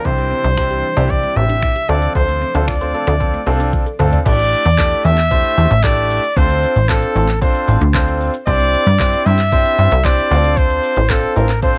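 A vibrato-laden trumpet with scooped notes leads this confident, energetic dance-pop excerpt from up front, colored by cassette tape and tape echo, over a clear, intimate grand piano with audible action noise and sidechain pumping. A punchy, funky analog bass, also pumping, and a smooth electronic R&B kit with a knocking kick, handclaps, finger snaps, shaker and toms drive the groove. A very quiet, breathy pad and a woody, mallet-like FM pluck playing chorused, echoing arpeggios drop out at 4.2 seconds as a drum fill carries the music into a new section, all within light reverb and a homespun cassette character.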